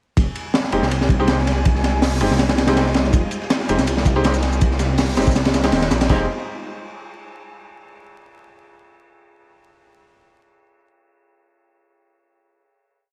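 A heavily chopped, crunchy breakbeat kit with a punchy kick and high-tuned snare drives this raw, dark drum and bass and jungle piece at 162 BPM in F minor, over a rumbling, detuned saw bass with tube saturation, sparse bright piano chord stabs carrying 12-bit sampler grit and dub echo, a very quiet, silky string-machine pad, and a breathy, wind-like noise layer holding a high note, while a gritty, overdriven soul sampler-style kit joins in the background at 3.1 seconds, with vinyl crackle and light reverb over the mix before a closing chord at 6.1 seconds.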